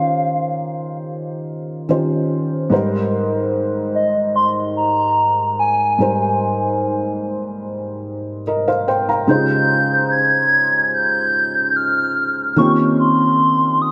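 A hollow, woody clarinet-like synth lead carries the melody with vibrato, chorus and delay, floating up front over a dreamy, smooth R&B groove at 73 BPM in Ab major. Beneath it, a felt-muted upright piano plays mellow, intimate accompaniment with lush chorus and audible action noise, moving through Eb13 and Abmaj9 before shifting to Dbmaj9#11 at 9.3 seconds. A long plate reverb soaks the whole mix in a hazy glow, and this short passage is cut from a longer piece.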